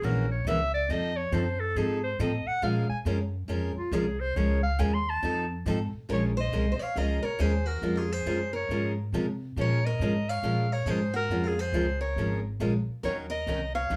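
Acoustic string swing in the jazz manouche style, this bittersweet, virtuosic passage moves at 138 BPM in 4/4 with a swung feel, set in Bb minor and cut from a longer piece. An up-front clarinet carries the melody with a clear tone, light vibrato and scooped notes, taking a jazz-style solo over the opening 6.1 seconds. Beneath it, a picked steel-string parlour guitar supplies accompaniment with a boxy, fresh-stringed sound and audible finger squeak, while a pizzicato upright bass on gut strings gives a woody, thumpy, dark foundation near the front of the mix. At 6.1 seconds a second picked steel-string guitar, a full-bodied dreadnought, adds a quieter second line. The harmony leans on altered dominant colour, with F7#9 pulling back to Bbm7 and a turn to Ebm7 at 13.0 seconds, all heard in a small room with moderate studio reverb.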